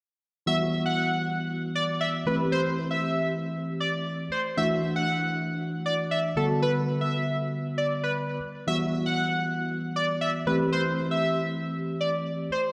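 A straight 4/4 dance-pop pulse at 117 BPM drives this confident fragment in E minor, tuned a touch flat to A4 = 437 Hz, as it moves through Emadd9, Am7, Dadd9 and Gmaj7 before returning to Emadd9 and Am7. From 0.5 seconds a worn, slightly out-of-tune tine electric piano sits up front with ensemble chorus, laying down the chords beneath a bold, retro octave-doubled lead. That lead is a bright, detuned sawtooth-and-triangle sound with ring modulation, a filter sweep, fast attack, vibrato, chorus and tape echo, and all of it is bathed in a long, dreamy plate reverb.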